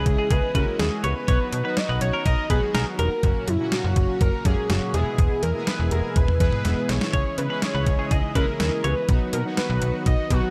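A fat, detuned sawtooth lead with vibrato carries the melody through tape echo in this nocturnal, melancholic synth-pop excerpt in C# dorian at 123 BPM, moving over chords that cycle from C#madd9 through B, F# and E. A bright, twangy clean electric guitar with subtle chorus and tape echo plays a second line, dropping out at 3.1 s and returning at 7.1 s. Nasal, brassy analog synth brass with chorus and shimmering vintage string-machine violins in the background fill out the harmony, while a snappy, metallic FM bass and an overdriven, up-front 8-bit drum machine with thumpy kick, cowbell and toms drive the groove, breaking into a fill at 6.6 s, all in a light reverb.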